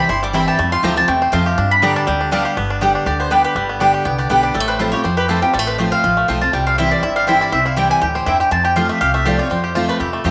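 Soaked in a wet spring reverb, this rustic, virtuosic bluegrass excerpt in G mixolydian swings at 242 BPM: a woody, double-strung mandolin carries the lead beside a twangy, fingerpicked banjo melody touched with tape echo, while an up-front, full-bodied dreadnought guitar picks the accompaniment with audible finger squeak, a second mandolin adds picked stabs in the background from 0.3 seconds, and a thumpy, gut-strung upright bass plucks a dark low line, with the lead mandolin featured in a solo for the opening 2.6 seconds.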